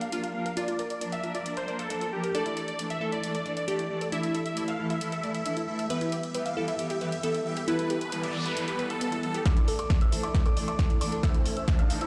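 A straight 4/4 pulse at 135 BPM drives this bittersweet uplifting trance excerpt in D minor, set by a punchy, overdriven analog drum machine on hi-hat and snare. Huge, lush supersaw chords carry the melody with phaser, sidechain pumping, digital delay and a low-pass filter that sweeps across the closing build-up. Beneath them, a dark, bowed string section holds soft, floating chords, while a bright, detuned unison pluck spins arpeggios in the background. A glassy, crystalline wavetable pluck with chorus and tape echo plays a second line until 9.4 s, and a noise sweep and riser rises quietly from 8.0 s. At 9.5 s an overdriven electronic kick drum lands up front with a drum fill, as a polished grand piano adds a high second line through the build-up over harmony that has moved from Bb through Dsus2 and Em back to Dsus2, all heard in a stone room with light reverb.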